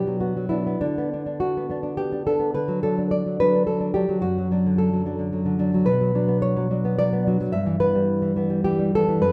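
A lone nylon-string guitar opens on a B minor chord, thumb-plucked and placed up front, with a finger squeak audible on the strings. This romantic classical piece moves in 3/4 at around 107 BPM, but the beats are uneven and the rubato lends it a tender, breathing quality. The harmony passes from Bm through Bm/D and D/F# before returning to Bm and settling on Em/G near 7.5 seconds, while the guitar spans F#2 to E5. The acoustic tone is warm, set inside a wet recital hall reverb that lingers for about 1.6 seconds. The passage, taken from a longer piece, lasts just over nine seconds.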